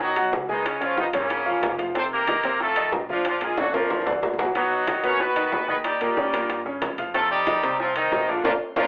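Salsa with a fiery, passionate drive, this short cut from a longer piece moves in a straight 4/4 with a brilliant horn section carrying the melody up front, its light vibrato, vintage character and octave doubling giving the ensemble a pop-style sheen. A bright upright piano sits just as present beside it, its woody, polished attack and short sustain filling out the harmony across a moving progression that begins on Badd9 and closes on F5. Beneath them, a thumpy pizzicato upright bass with steel strings stays in the background, alongside round, low-tuned bongos, damped and compressed congas with a saturated edge, and ringing metal-shell timbales that join at 0.2 seconds. A drum fill from 3.6 to 4.6 seconds pushes the groove forward, and the whole band hits an accent from 8.4 seconds to the cut at 8.9. A moderate studio reverb surrounds the mix, yet the overall sound is narrowed into a telephone-like band, lending it a boxy, lo-fi tint.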